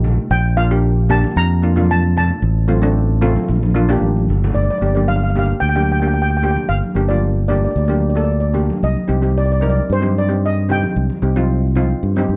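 A dry, close recording in a 1970s studio style frames this carefree, festive calypso excerpt, cut from a longer piece and moving at 112 BPM in a straight 4/4. A lead steel pan carries the melody from 0.3 to 11.7 seconds, its mellow, dark tone shaped by soft rubber sticks. Cello pans struck with hard rubber sticks supply a bright, full accompaniment, close-miked and metallic. Underneath, a fingered electric bass sits punchy and up front with a direct, amped sound, while medium-tuned congas played with soft hands ring distantly in a large room in the background. A drum fill at 4.2 seconds leads into the second section, as the harmony moves through Bb, F/A and Gm before reaching Cm at 8.8 seconds.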